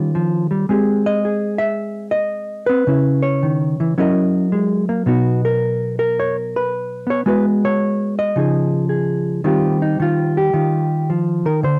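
A swung 4/4 pulse at 110 BPM carries this short solo jazz excerpt, cut from a longer piece, its playful mood built on a lone hollow-body electric guitar, dark and clean, fingered up front from B2 to F5 with the soft grain of cassette tape and light reverb in a home recording. Tuned slightly under standard pitch, the guitar moves through rich chords such as Eb9, Abmaj7, Gb13 and Bmaj7 before a closing passage from 9.4 seconds settles onto Eb69.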